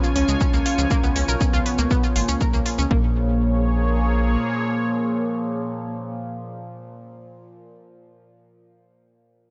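Melancholic and hypnotic, this short cut from a longer melodic techno piece in Bb phrygian at 120 BPM opens on a drop where a punchy, up-front kick drives tape-warm shaker and smooth hats, a bright detuned analog pluck arpeggio and a round, deep analog bass, all pumping beneath a dark, vibrato-tinged octave-layered synth lead with tape echo, a gritty evolving pad swelling on sustained chords, and a resonant drone with moving overtones. The drums and pluck fall away at around 3 seconds as the harmony shifts from Db to Bbm7, and the bass drops out at 4.4 seconds, leaving the lead, pad and drone in a lightly reverberant, softly rolled-off mix.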